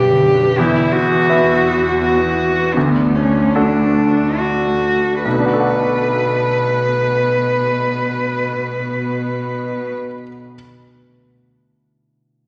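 Set in a wet scoring-stage reverb, this excerpt of an emotional, cinematic film score for orchestra moves in a rubato 3/4 at 68-86 BPM in B minor, with a moving, longing mood that slows over its first 5.2 seconds as the harmony passes from G through Esus2 to D. A solo cello carries the melody up front with a smooth, even, vibrato-rich bowed tone, while a bright, polished grand piano with short sustain accompanies and a concert harp rings out thumb-plucked arpeggios. Beneath them a lush studio cello section holds the bass with a focused, smooth-topped sound, and the music settles onto Bm7 at 5.2 seconds before the solo cello stops at 9.9 seconds and the piano lingers to 10.6 seconds.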